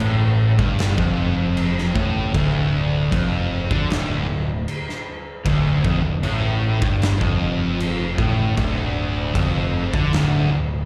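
Over a straight 4/4 pulse at 77 BPM, this sludgy, ominous stoner and doom metal excerpt in D minor stays on a single Dm chord as an oversized, low-tuned acoustic drum kit, gritty and up front with a boomy kick, medium-tuned snare and crash cymbal, pounds until 10.3 seconds beneath a dark, distorted fuzz guitar riff up front, a second fuzz guitar with slapback echo in the background, a bright, double-tracked raw garage guitar with overdrive and slapback echo, and a punchy, overdriven growling picked electric bass, all heard as a live gig through the venue's PA with recital-hall reverb.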